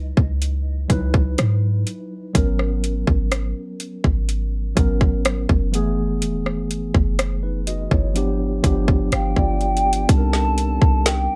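Light reverb gives this late-night contemporary R&B fragment a soft sense of space, set at a slow 62 BPM in straight 4/4 with a longing mood. A mellow tine electric piano carries extended minor chords such as Dbm11 and Gbm11 before a G7 turns toward Cm9, over a deep, boomy 808-style bass and an up-front trap kit whose hard-clipped kick, woody snare and metallic hats enter at 0.2 seconds. A hollow, warbling clarinet-like synth lead with chorus and vibrato touches in at the very start, then returns at 9.1 seconds to sing the melody high above.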